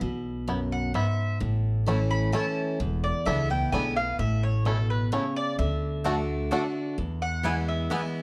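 A twangy banjo played with fingerpicks enters at 0.5 seconds, joined at 0.7 seconds by a bright, picked mandolin carrying the melody up front and, from 6.0 seconds, a second mandolin adding stabs, all over a full-bodied dreadnought guitar with fresh strings and finger squeak and a thumpy, woody upright bass with gut strings in this driving, joyful bluegrass excerpt in A major at 129 BPM in 3/4, moving through E, A, E7, A, D and E in a light reverb.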